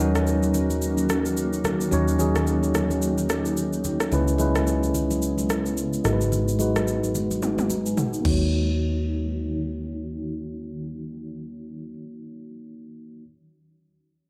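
Soulful and late-night, this amapiano passage, cut from a longer piece, sets a clean, up-front tine electric piano over a blurred, evolving granular cloud pad sitting in the background, with a round, punchy hollow-body bass underneath. A deep house drum kit with a deep kick, rim click, shaker, toms and crash cymbal carries a swung groove alongside very quiet, hard-handed congas, while a filter sweep runs through the opening section. At 7.4 seconds the drums and electric piano both play fills, and the dry, gritty recording adds only a light touch of reverb.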